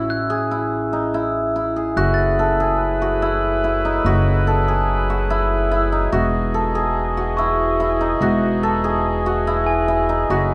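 Set in a straight 5/4 at 144 BPM, this restless, shimmering passage of contemporary chamber music, cut from a longer piece, is driven by up-front hammered cimbalom arpeggios over a woody pizzicato upright bass, with a bell-like glockenspiel played with soft plastic mallets glinting in the background. At 2.0 seconds a classical-style woodwind section enters with sustained chords, light vibrato and a smooth top, as the harmony moves from F#m11 to Emaj9. The glockenspiel drops out at 3.4 seconds and returns at 7.4 seconds. The close, detailed recording carries only light reverb, keeping the cimbalom's ringing tone and the bass strings intimate.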